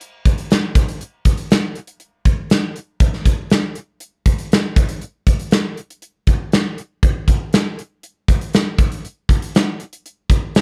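Swaggering and confident, this short rock excerpt in a straight 4/4 feel is carried entirely by a gated 80s drum kit playing from start to finish. The kit sits up front, with hi-hat, kick drum and snare drum heard in a big, airy gated room that lends the hits a polished sound. The tight kick and medium-tuned snare define the acoustic character of the playing. A light reverb adds a touch of space around the sound. Cut from a longer piece, the passage runs for 10.6 seconds as a single section.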